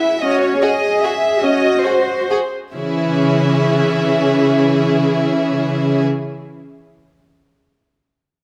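A rich violin section carries the melody over a dark, softly attacked cello bass from the very start of this short passage, cut from a longer classical ballroom waltz in C# minor, in 3/4 with a rubato feel at 129-165 BPM. A focused viola accompaniment enters at 0.2 s over a G#7/C# chord, and a clear second violin line joins at 0.6 s, with the tempo slowing through the opening before the harmony arrives on C#m at 2.7 s. The mood is sweeping and dark, the bowed strings alive with vibrato, closely miked and set in a moderate concert hall reverb.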